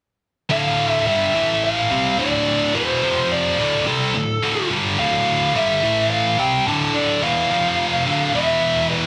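A scooped, high-gain electric guitar sits up front, double-tracked and heavily distorted, picking a low riff through this menacing, aggressive rock clip from 0.5 to 9.1 seconds. Above it, a biting overdriven lead guitar carries the melody in a higher register, trailed by analog delay, over a repeating minor progression. The dense, heavily limited modern master and a moderate large-studio reverb add weight and a sense of space.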